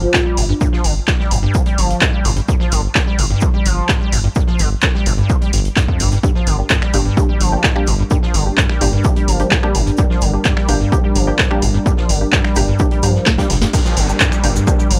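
A dry, gritty hardware sound in a small room frames this hypnotic, driving acid house cut at 128 BPM in G minor, where a punchy electronic kick and a booming analog drum machine with tonal snare and metallic hats sit up front, while a natural acoustic kit with a fat snare stays in the background. A squelchy, resonant square-wave acid riff with overdrive, chorus and tape echo rides over a round, deep analog bass, and a brief woody marimba figure with sampler grit sounds only from 0.0 to 0.7 seconds. At 6.2 seconds a moody detuned pad and muted, mellow dub chord stabs join, and after a drum fill a downlifter marks the drop at 13.7 seconds.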